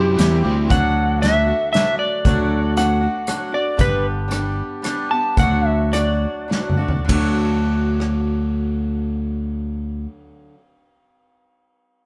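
Folk rock and heartland rock in 3/4 with an open-road, jangly mood, cut from a longer piece, where a dark, slightly broken-up electric slide guitar takes an up-front solo over C, D and G chords that slows from 3.8 s, backed by a boxy, finger-squeaking picked acoustic guitar with a swing feel, a growly, punchy picked bass, an unplugged drum kit played with bundle sticks that has dark cymbals and adds a fill just before 7.1 s, and a brief double-tracked crunchy overdriven guitar riff with tremolo at the very start, all captured live in one room with light reverb.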